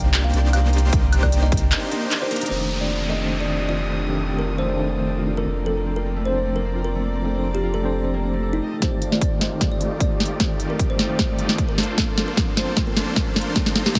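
A lush, bittersweet future bass excerpt with light reverb opens straight on a drop, where huge, detuned supersaw chords, a thick triangle-like sub bass and an overdriven trap kit of sharp snare, crisp hats, handclaps and woodblock sit up front at 152 BPM in a half-time feel with a slight swing. Over everything that pumps against the sidechain, a close-miked, woody kalimba carries the melody with dub echo, while a fingerpicked concert harp rings out arpeggios and a dark, sul tasto chamber string section holds soft chords in the background. A punchy, tape-warm electronic kick appears briefly before a short break, and at 2.5 seconds the supersaws and drums drop away as a worn, slightly out-of-tune tine electric piano with medium tremolo enters through a combo amp, alongside a downlifter and riser, while filter sweeps work on the harp and strings. The sub bass stops at 8.6 seconds, and at 8.8 seconds the kick, trap kit and filtered supersaws return for a build-up driven by a drum fill. 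The harmony moves from Cm9 through F13 and Bbmaj9/F, passing briefly through Ebmaj7#11/A before returning to F13.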